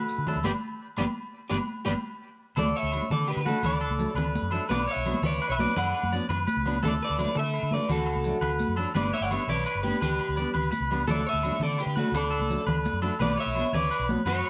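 Two slightly broken-up electric guitars open this carefree highlife excerpt at 0.0 s: one sits up front with the melody through a lush chorus, and the other is twangy with spring reverb, playing arpeggios, both coloured by cassette tape. Grainy maracas slip in almost immediately. Within a fraction of a second they are joined by a dark, round, foam-muted bass, then a full-bodied jumbo steel-string acoustic guitar with finger squeak, bright, high-tuned congas struck with hard hands, and distant, ringing agogo bells. The band moves at 113 BPM in a straight 12/8 in D major, with a band accent up to 2.6 s, and the home cassette recording in a modest booth gives it a warm, homespun feel.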